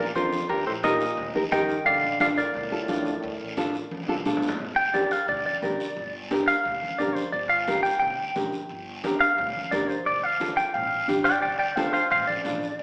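Cumbia in G minor at 176 BPM, driving and danceable, with a bright, twangy clean electric guitar up front carrying the melody through spring reverb while a mellow trombone with vibrato plays a second line until 4.2 s. A fingerpicked nylon-string guitar, complete with finger squeak, picks out the accompaniment over Eb and Dm, with a woody, thumpy upright bass in the background and distant, ringing congas and a raspy guiro keeping the beat. From 4.6 s the electric guitar takes a solo over Gm and Dm, and the whole band, playing live in one room with a wet, large studio reverb and an AM radio sound, feels cut from a longer piece.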